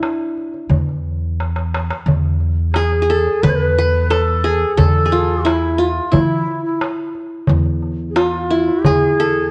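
Warm and passionate, this Turkish makam ensemble piece moves at 88 BPM in a straight 4/4, set in E makam hicaz with tuning at A4 = 442 Hz. Up front, a bright, plectrum-plucked qanun carries the melody between D4 and B4, its triple strings giving a sharp-edged shimmer. A crisp metal-shell darbuka drives the rhythm with a compressed, saturated punch, and an up-front pizzicato upright bass on steel strings adds a woody low line from E2 to E3. After a drum fill at 1.4 s, the music moves into a new section, and at 2.7 s a distant, end-blown ney enters with a second line, its soft-attack reedy tone ranging from E4 to C#5-42c. Light reverb surrounds the group, and the sound carries the wear of old cassette tape, with warbling pitch drift and highs rolled off above 10.3 kHz, in this excerpt cut from a longer piece.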